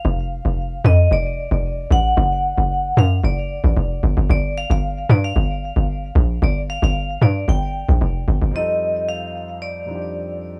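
A dry, gritty hardware recording in a small room gives this amapiano fragment, cut from a longer piece, a close and raw sound. Up front through the drop, a hollow log drum bass carries the low end until 8.5 seconds with a bouncy, percussive FM tone, a noise layer and a fast, decaying attack. Over it, a vibraphone struck with medium hard mallets plays a bright, metallic melody with fast motor vibrato, trailed by tape echo, and rings on almost to the end. At 8.5 seconds a warm, polished grand piano enters as a soft but present accompaniment, and the harmony settles on an F13 chord. The mood is soulful and hypnotic over a straight 4/4 pulse.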